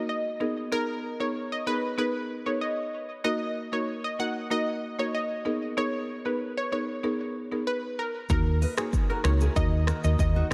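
A dreamy mix soaked in lush hall reverb frames this hypnotic, smooth afrobeats passage, cut from a longer piece. An up-front analog pluck carries the melody with a bright, detuned sawtooth tone, treated with chorus and tape echo. Beneath it, a dry, woody buzzing marimba played with medium mallets provides accompaniment over G#madd9 and D#m chords. At 8.3 seconds a round, dark hollow-body electric bass and an electronic afro-pop drum kit arrive together, the kit's deep kick, crisp hats, finger snaps, rim click and shaker roughened by vintage 12-bit sampler grit. A fingerpicked nylon-string guitar adds a warm classical riff shortly after, and a glassy, ethereal FM pad with ensemble chorus drifts in quietly in the background at 8.9 seconds.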